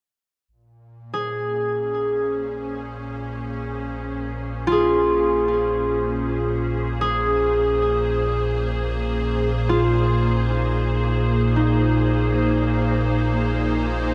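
Reflective and serene, this ambient passage floats in free time in Bb minor, tuned to A4 = 438 Hz, and resting on a single Bbm7 chord. A round, deep analog bass fades in first at 0.5 seconds, holding a low Bb1 with a dark, sustained tone shaped by a filter sweep. At 1.0 second an evolving wavetable pad gradually emerges with sustained chords, its bright, morphing sine-like texture thickened by ensemble chorus and its own built-in reverb. From 1.1 seconds a fingerpicked concert harp sits up front with ringing arpeggios in a narrow middle register, its acoustic notes trailed by delay. The whole piece is bathed in a huge, wet ambient reverb with an 8.3-second decay, giving the dark production a deep, enveloping calm as it continues from a longer work.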